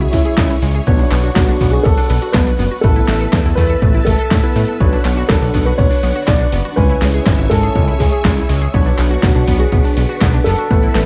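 Italo disco at 122 BPM in B dorian, nostalgic and melodramatic, where a dark, boxy grand piano carries the melody through tape echo over lush string-machine chords with phaser and ensemble chorus, a detuned analog pluck arpeggiating in the background, barky, lightly overdriven electric piano stabs, a fat sawtooth bass, a punchy electronic kick and a gritty, compressed sampler-style kit of handclaps, hi-hat and snare, all moving through C#m, Bmadd9 and Asus2 in a dry mix dusted with vinyl crackle.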